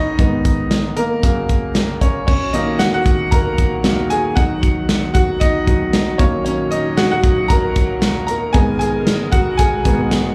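Driving and bittersweet, this piano-driven pop passage, cut from a longer piece, moves at 115 BPM in 4/4 with a light sixteenth-note swing, its chords moving from G#madd9 through F#, D#m and B/D# before returning to D#m and back to G#madd9. A bright, woody upright piano with long sustain, plate reverb and slapback echo sits up front and carries a solo throughout, joined at 0.2 seconds by a punchy, acoustic studio drum kit of kick, medium-tuned snare, hi-hat and crash. At 2.3 seconds a lush bowed string section with smooth vibrato enters in the background, and the whole performance is heard as a live gig through the venue's PA, with moderate club reverb.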